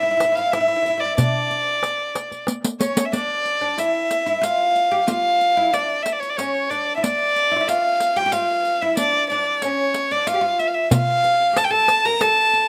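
A straight 3/4 pulse at 92 BPM carries this longing, soulful excerpt from an Arabic maqam ensemble in D maqam nahawand. The riq's bright jingles run throughout, while the clay-shelled darbuka plays a fill that closes the opening phrase, drops away after 2.9 s, and returns at 10.9 s. Up front, a single intimate violin sings the melody with light vibrato, a soft airy sul tasto bow and a slapback echo, as a woody, fretless oud plucks a deep second line beneath it in a dry outdoor sound with little reverb.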